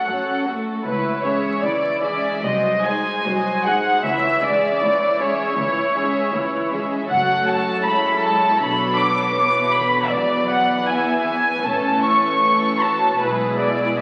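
In a rubato 4/4 at 78 BPM, this solemn, melancholic slow romantic movement for string orchestra opens with an up-front violin melody sung in a pure, floating sul tasto tone over a softly bowed second violin line, dark woody violas with vibrato, and rich cellos, while the double basses join in the background at 0.9 s, all bathed in a wet scoring-stage reverb and the crackle of a very old 78 rpm record, from a fragment cut from a longer piece.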